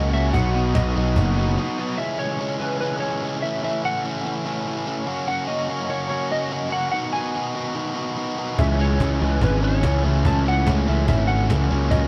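Indie rock with a cool, moody cast, this excerpt from a longer piece moves in a straight 4/4 through a dark production with light reverb. A mellow, clean electric guitar carries the fingered melody through an analog chorus, while a vintage combo organ sits in the background with buzzy, lightly vibrato sustained chords bathed in lush chorus. Up front, a biting overdriven guitar picks a riff throughout, joined at the start by a second overdriven guitar set further back with its own analog chorus. A growly, fuzz-drenched picked bass and a woody, compressed cajon played with soft hands and faint snares drive the opening until a brief break at 1.6 seconds. After a thinner stretch from 2.0 seconds carried by the riffing guitar, the organ and the melody, the bass, cajon and second guitar return together at 8.6 seconds as the C# minor and A6/C# chords come back around.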